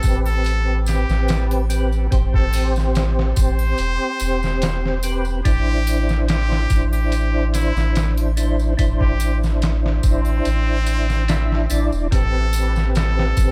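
A nasal, muted trumpet carries the melody of this brooding, dark trip hop excerpt, its brilliant tone colored with vibrato and trailed by tape echo. Underneath, a mellow percussive tonewheel organ shimmers through chorus vibrato, slow rotary speaker and tremolo, while a deep, round dub sub bass sits up front beside a gritty, pitched-down sampler-style drum kit with a thumpy kick. Dry tambourine and triangle stay in the background over a moody shift from Am7 to Cadd9/A at 5.5 seconds and back to Am7 at 12.1 seconds.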